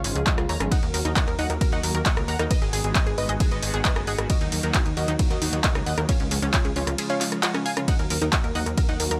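A straight 4/4 pulse at 134 BPM drives this bittersweet, euphoric uplifting trance excerpt in Eb minor, with a punchy, tape-toned analog drum machine of handclaps, hi-hat, ride cymbal and rim click sitting up front from the start and an electronic kick joining at 0.3 s. Beneath them a plucky, funky analog bass and a mellow, evolving supersaw swell holding sustained chords both pump against the sidechain as the harmony moves from Db through Ebm and Abm7. On top, a lush, detuned unison pluck carries the melody with delay, while a second, brighter and vintage-warbling unison pluck spins arpeggios with delay in the background, all in a dry, close sound.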